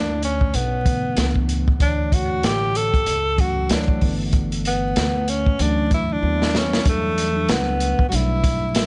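A breathy tenor saxophone leads this relaxed jazz-hop excerpt at 95 BPM in D major, its mellow subtone melody carrying vibrato and scooped notes, placed up front with plate reverb and analog delay. Beneath it, a clean tine electric piano comps through Dmaj7 and G6 chords with plate reverb, a woody pizzicato upright bass holds the low end, and a crunchy, saturated breakbeat kit with a tight kick and medium-tuned snare enters at 0.2 seconds with a lazy 16th-note swing. A drum fill at 6.2 seconds leads into a new section on Em11 at 6.9 seconds, all under a light reverb and a dusty layer of vinyl crackle.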